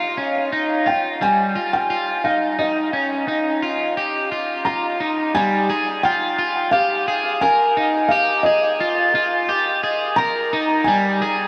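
Melancholic and haunting, this brief dream pop fragment pairs a dark, felt-muted upright piano melody, its action noise audible beneath lush chorus and diffuse ambient delay, with up-front picked arpeggios from a twangy, slightly broken-up electric guitar carrying subtle chorus and its own diffuse delay, both afloat in a huge, reverb-soaked space where the harmony shifts at 5.4 s before the chords drop out at 10.9 s.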